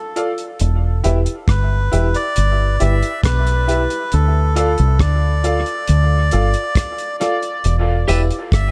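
A damped 70s drum kit of tight kick, hi-hat and rim click and woody, slightly detuned upright piano stabs open this meditative, hypnotic dub reggae excerpt at 68 BPM in E phrygian, joined moments later by a deep, round fingered electric bass sitting up front, and then by a reedy, breathy melodica melody entering at 1.5 seconds, with piano and melodica both soaked in dub echo, while a clean electric guitar and a tambourine flicker in with echo at 8.1 seconds, all over Dm and Em chords in a small, echo-heavy room.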